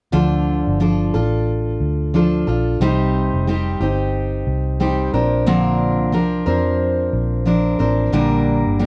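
A full-bodied picked steel-string acoustic guitar sits up front from 0.1 seconds alongside a dark, round, foam-muted fingered electric bass in this tender, wistful acoustic pop fragment at 90 BPM in 4/4 with a gentle 16th-note swing, moving through Dm, Cm, Bbadd9 and Gm under light reverb and the worn, warbly pitch drift of old cassette tape.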